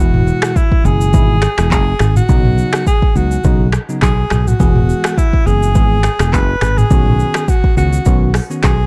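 Afrobeats at 104 BPM in E major, this breezy, sunny cut from a longer piece rides a light sixteenth-note swing in 4/4. An afro-pop drum kit sits up front with a deep kick, crisp hats, finger snaps, handclaps, rim clicks, shaker and toms, its electronic sound roughened by vintage 12-bit sampler grit and re-recorded in a small room. A punchy fingered electric bass, also up front, holds the low end between E1 and C#2, while a bell-like tine electric piano supplies clean, direct accompaniment. Over them, a bright alto saxophone carries a pop-style solo melody with vibrato, trailed by tape echo. The harmony alternates between E and Badd9 every few seconds, and the production is dark and warm, with little reverb, across the roughly 9 seconds.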